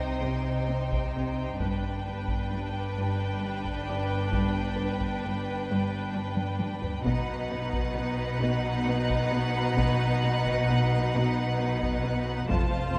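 Tense and eerie, this excerpt of a cinematic suspense score moves at 66 BPM in 3/4, with a warm, vibrato-laden violin section carrying a high melody over a lush, up-front second violin line, a rich cello riff, bowed cellos and focused double basses anchoring the bass, and a clear chamber violin texture glinting briefly at the opening, while a ringing thumb-plucked concert harp murmurs in the background until 7.5 seconds and returns at 12.9 seconds, close heavy-stick taiko drums enter at 0.9 seconds and play a fill at 6.4 seconds, and Cm, G and B chords unfold in a spacious concert hall reverb.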